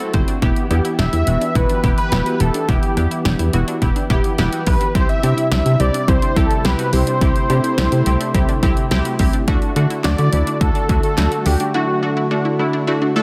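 A round, up-front FM bass anchors this cool, nocturnal synth-pop excerpt at 106 BPM in E minor, alongside a punchy analog drum machine of kick, snare, hi-hat and handclaps, a funky chorused polysynth comp with tremolo, a shimmering pulse-width pad and a lush delayed unison pluck in the background, while a thick, nasal, warbling unison lead with delay enters at 1.0 seconds over Em, C and D chords in a dense, heavily limited modern master with light digital ambience.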